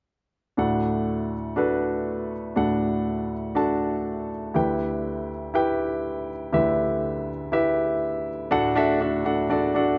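Warm and hopeful, this brief pop fragment at 121 BPM in D major features a polished, up-front baby grand piano spanning D2 to A5 in an accompanying role from 0.6 seconds, moving from D to Em/D at 4.5 seconds and settling back on D at 8.5 seconds, all bathed in a moderate plate reverb with a soft top end that stays below 7.5 kHz.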